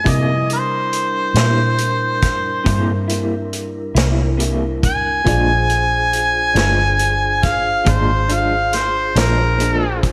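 Slow blues in 12/8 at 46 BPM, rollicking yet soulful, with an up-front harmonica carrying the melody in an overdriven, scooped, lightly vibratoed jazz style over a foam-muted, round electric bass and a vintage drum kit with a punchy kick and rolled-off top. A slightly broken-up, lo-fi electric guitar adds tremolo and slapback echo, while a flute-like tonewheel organ holds sustained chords through a slow rotary speaker and a woody upright piano sits very quietly beneath. The short fragment moves from C7 to Bb7 at 5.2 seconds, and a lush hall reverb gives it a big arena sound.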